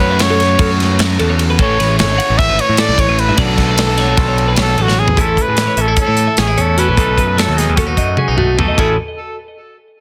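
A trumpet with a warm, pop-style tone and light vibrato carries the melody up front from the first moment, trailed by digital delay. Beneath it, a twangy twelve-string electric guitar picks bright arpeggios through spring reverb and delay, while a double-tracked overdriven guitar drives a bright, compressed riff and a growling picked bass, overdriven and up front, anchors the low end. This short, playful, intricate math rock and midwest emo passage in 9/8 rides over a punchy, mid-forward studio drum kit of hi-hat, kick, snare, ride and toms, with soft clipping adding bite to the kick and snare. At 5.2 seconds the overdriven riff drops away and a clean, picked electric guitar takes up a sparkling accompaniment as the harmony moves through rich seventh and ninth chords. Drum fills mark the turns, the last running from 8.2 to 8.8 seconds, all within a dry, dense and heavily limited modern mix.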